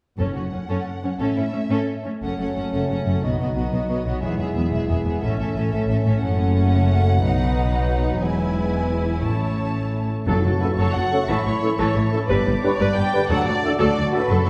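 A lush symphonic violin section carries the melody in this swashbuckling, adventurous cinematic cue, a short cut from a longer piece in 6/8 at 120 BPM that moves from F# dorian into F# phrygian at 10.3 seconds. Beneath it, a second violin section adds a smooth, even second line, while violas fill out the harmony with a rich, vibrato-laden sound and a close cello section joins a distant double bass section to anchor the low end. Timpani struck with hard mallets mark the opening and return at 10.3 seconds. From 2.2 seconds a build-up begins as a roomy French horn section holds mellow chords in the background and a ringing, fingerpicked concert harp spreads arpeggios across its range. In the final stretch, a clear oboe and a very quiet clarinet add second lines, a trombone section sustains soft chords, and a dark trumpet section punctuates with stabs from afar, all bathed in the reverb of a recital hall.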